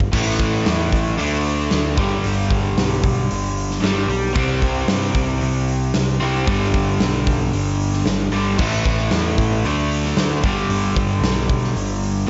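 A straight 4/4 pulse at 114 BPM drives this anthemic, powerful hard rock excerpt, with a huge arena drum kit of punchy kick, medium-tuned snare, hi-hat and bright crash cymbals sitting up front in a big, natural room. A crunchy, double-tracked overdriven guitar plays a picked riff through A5, D5, G and C5, while a growling electric bass with overdrive anchors the low end. All three parts run the full 12 seconds, framed by small room ambience with a dark top end.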